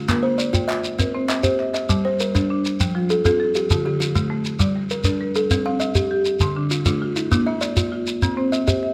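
Southern African traditional music built on an mbira-style interlocking cycle, this rippling, hypnotic excerpt moves at 133 BPM in a straight 12/8, with an up-front buzzing kalimba plucked by thumbnail and a woody marimba struck with medium hard mallets weaving arpeggios in G equiheptatonic over chords such as Bb, C, Gm, F and Dm. A grainy, close shekere runs throughout, while a crisp, saturated group handclap sounds only from 0.1 to 1.8 seconds before the second section takes over at 1.9 seconds. Light reverb and close, detailed microphones keep the bright, short kalimba attacks and the boxy marimba tone vivid.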